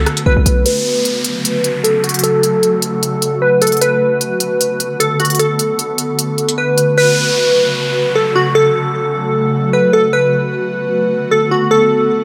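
Light reverb and digital ambience frame this menacing, hard-hitting half-time trap piece in F# minor at 152 BPM: up-front glassy keys with chorus and a filter sweep carry the melody over a mellow, ethereal pad of detuned sustained chords treated with ensemble chorus and phaser, moving between Bm7 and F#m, while a punchy, heavy 808-style bass strikes only in the first 0.6 seconds, a crisp electronic trap kit of hi-hat and rim click plays until 6.9 seconds, and two electronic downlifters sit low in the mix.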